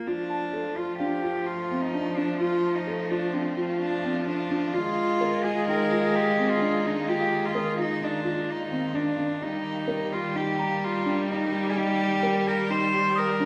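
Restless and pensive, this contemporary chamber piece moves in an uneven 5/4 at 128 BPM, a short stretch cut from a longer work. A single bowed cello carries the melody up front with a reedy, gut-string, period-style tone, joined almost at once by a solo viola whose smooth vibrato shapes a second line beneath it. A felt-muted upright piano plays soft, dark arpeggios with an intimate, thick-felt mellowness, while a distant, lush string section holds sustained chords behind them. From 0.3 seconds a bell-like celesta adds sweet, delicate sparkle in the background. The harmony shifts from Dm to Bbsus4 to Eb, and the whole ensemble sits in the resonant wash of a recital hall, with a reverb that lingers around 1.5 seconds.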